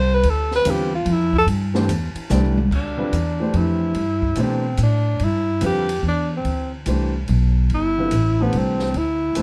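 Swinging in a brisk 3/4 at 145 BPM, this hypnotic, intense modal jazz excerpt in D dorian opens on a mellow tenor saxophone solo full of subtone, vibrato and scooped notes over a woody pizzicato upright bass, both up front, while a small-room drum kit with dark cymbals, a high-tuned snare and a boomy kick plays a fill at 2.3 seconds, an intimate grand piano with audible action noise joins at 0.7 seconds, and the harmony shifts from D9sus4 to D13sus4 at 2.7 seconds, all set in light reverb and a dark, warm production.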